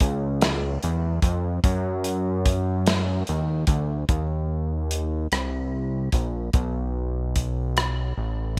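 Late-night and yearning, this slow R&B fragment in six-eight moves at 49 BPM, cut from a longer piece, with a bright 1980s-style digital sheen and little reverb overall. An up-front acoustic soul kit of tight kick, medium-tuned snare, rim click and hi-hat sounds mid-forward and rolled-off on top, its small-room character carried by gated reverb until 8.0 seconds. Alongside it a fat, thick analog bass blends sawtooth, detuned and triangle tones with wave-folding and a filter sweep, sustaining between A1 and F#2 as a first section gives way to a second at 4.1 seconds.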